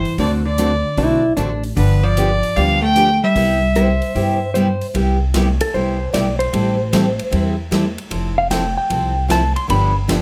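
A clear, biting fiddle with light vibrato carries the melody until 4.5 s in this cheerful, playful western swing country excerpt at 151 BPM in C major, joined by a dark hollow-body jazz guitar line, a clean, compressed lap steel up front, a bright dreadnought acoustic guitar with finger squeak, a woody pizzicato upright bass and an airy, polished big-band drum kit with punchy kick, before an electric slide guitar solo comes in at 4.9 s in a moderate club reverb.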